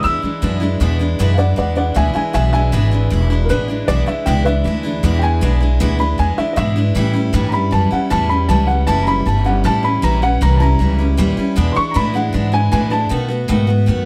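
A dark upright piano, a bright, full-bodied picked steel-string acoustic guitar and a thumpy, woody upright bass on gut strings all open this retro, rowdy rockabilly cut together, with the guitar's finger squeak and the plucked bass sitting up front. From 0.8 seconds the mellow, short-sustained piano takes a solo over a straight 4/4 groove that moves from E7 to A7, through an A#dim7, and back to E7 before turning to B7. Light reverb frames the trio, and the piano drops out at 13.3 seconds while guitar and bass carry on to the cut at 14.1 seconds.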